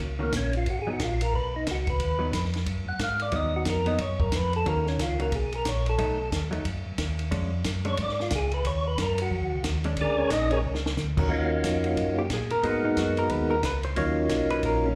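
Bluesy and smoky, this soul jazz organ trio passage swings at 180 BPM in 4/4, sitting in Eb minor over chords such as Ebm7, Abm7, B7 and Bb7#9. A mellow tonewheel organ carries the bass line, round and up front with a touch of key click, turning slowly through its rotary speaker. A second tonewheel organ plays the melody and takes the solo from the start, its clean, percussive tone lit by third harmonic percussion, slow rotary and a slapback echo. A hollow-body jazz guitar, fingered and compressed with a dark electric sound and its own slapback echo, fills out the accompaniment, then steps into a solo at 11.3 seconds. A compact cocktail drum kit keeps things dry and natural, with a high-tuned snare, punchy kick, shadowy ride, crash and hi-hat, and it drops a short fill at 10.6 seconds to hand the spotlight to the guitar. The whole thing is heard as a live gig through the venue's PA, wrapped in moderate club reverb, and it is cut from a longer piece.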